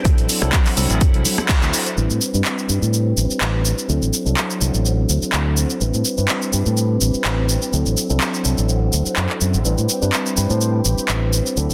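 A clean tine electric piano, heard through a combo amp, and a swirling, warbling string machine with 12-bit grit open this nostalgic, funky filtered disco house cut at 125 BPM in A dorian, with dry, very quiet congas and maracas that drop away at 2.0 seconds. A punchy overdriven electronic kick appears only briefly at the start, while a house kit of handclaps, bright hats, rim click and shaker carries on up front beside a bright fingered electric bass, and the pumping, low-pass filtered keys, strings and bass cycle between D9 and Am11. At 10.5 seconds a fat, nasal analog synth brass note on C5, with chorus and digital delay, sits in the background of this dense, heavily limited mix with light reverb.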